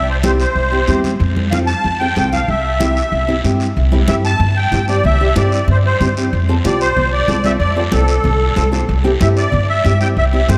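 A reedy, shimmering musette accordion carries the melody up front from the very start, its line colored by a touch of delay, in this festive, joyful cumbia cut from a longer piece. Beside it, a woody, growly upright bass plays pizzicato low in the mix's foreground, thumpy and present from 0.0 s. Just after, at 0.2 s, a fingerpicked nylon-string guitar joins with classical accompaniment dressed in a lush chorus, while ringing, medium-tuned congas struck with hard hands sit in the background and a raspy, band-limited guiro adds vintage scrape. The tempo is a brisk 187 BPM in a straight 4/4, in C major with tuning set to A4 = 438 Hz, and the harmony moves simply between C and F, with a new section arriving at 3.8 s. A moderate church reverb soaks the whole mix in a dreamy, spacious haze.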